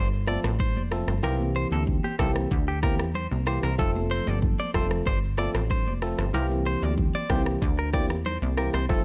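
A straight 4/4 afrobeats groove at 94 BPM rides on an electronic, produced drum kit with a deep kick, rim click and shaker. At 0.3 seconds, ringing, high-tuned congas join in the background, and a biting, percussive FM electric piano with chorus enters alongside them, lending this sunny, breezy excerpt its lift. A punchy, funky analog bass with a sawtooth filter pluck sits up front, while a bright, twangy clean guitar, recorded direct and compressed, plays a picked riff through digital delay over an alternation of F and C7, all in a dry mix with little reverb.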